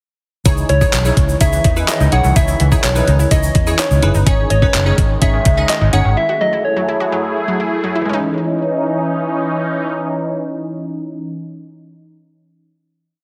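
Heavily compressed, radio-style sound with light digital reverb frames this short, energetic and bittersweet dance-pop piece in C# minor at 126 BPM, built around a chorus over C#madd9, G#sus4 and F#m7 before a closing C#madd9 chord at 8.1 seconds. An overdriven, thumpy 8-bit drum machine with handclaps, hi-hat and kick plays a syncopated pop beat alongside a dark, foam-muted vintage fingered bass with chromatic approach notes, while crisp detuned wavetable chord stabs, a resonant sweeping pad with chorus and a lush detuned unison pluck with delay running threes arpeggios in sixteenths all pump to the sidechain. A grainy, distant egg shaker patters sixteenths in the background, and a gentle FM lead with chorus, vibrato and delay sings hook phrases from 0.7 seconds, leaving the pad and pluck to ring out until about 11.4 seconds.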